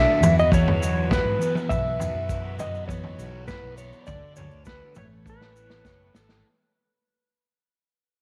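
This hazy, kaleidoscopic psychedelic rock fragment opens fading out, with an up-front clean lap steel guitar playing a slide melody with volume swells and tape echo. Beneath it sit double-tracked fuzz guitar riffing through distortion and phaser, a round fingered electric bass, and a soft-attack chamber string section floating in the background with sul tasto chords. At 0.2 seconds a muffled, lo-fi vintage drum kit with punchy kick and a grainy tube shaker join over Esus2, Bsus4, D and Aadd9 harmony, and the drums play a fill from 5.3 seconds under light studio reverb.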